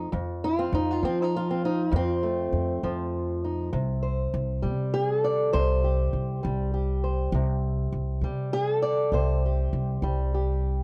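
A fingerpicked, ladder-braced acoustic guitar and a pizzicato upright bass start together at the very top of this short cut from a longer piece of acoustic country blues. The feel is laid-back yet rollicking, moving at 66 beats per minute in a straight 12/8. The guitar carries the melody with a boxy, woody tone and the dull ring of old strings, sitting up front in the mix. Beneath it, the steel-strung upright bass is growly and thumpy, also placed up close. The harmony opens on F7 and shifts to C5 at 3.7 seconds, with both instruments playing through to the end at 10.8 seconds. Light reverb and a dark production give the recording a warm sound.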